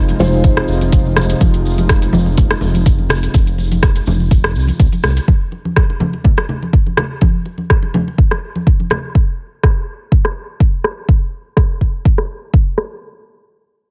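A swung 124 BPM groove of deep, up-front electronic kick and a tape-warm afro-pop kit with metallic, low-pass-filtered hats and rim clicks drives this spiritual afro house piece in F minor, joined by hard-handed, dry congas and a grainy, distant tube shaker, while a round, sidechain-pumped analog bass and a detuned, chorused sawtooth pad sustain an Fm7 chord until 5.2 s, a dark, felt-muted upright piano adds soft delayed stabs only in the first 1.4 s, and a filter sweep runs over the drums within a digital ambience.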